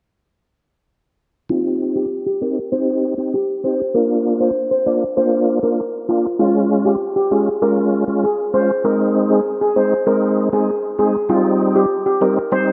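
From 1.5 s a mellow, shimmering steel pan carries the melody over a clean tonewheel organ with chorus vibrato, key click and fast rotary speaker, both up front under a filter sweep in a sultry, bouncy dancehall fragment at 98 BPM in C minor, moving through Cm, Bb, Db and Ab with a lush hall reverb and delay on the pan.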